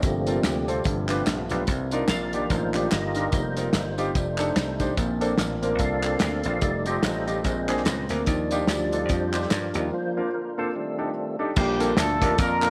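An uptempo, hopeful gospel groove in Bb major at 146 BPM with a swung feel opens on a percussive, fat tonewheel organ soloing with key click, chorus vibrato and slow rotary speaker over intimate concert grand piano with audible action noise, punchy foam-muted thumbed slap bass, a tight-kicked soul drum kit with dark cymbals, background tambourine and handclaps, and a very quiet, mellow French horn section holding sustained chords, all in a small echo-chamber room, until a break at 9.9 seconds gives way at 11.6 seconds to a punchy, roomy horn section taking the melody in octaves on a closing Bbmaj7.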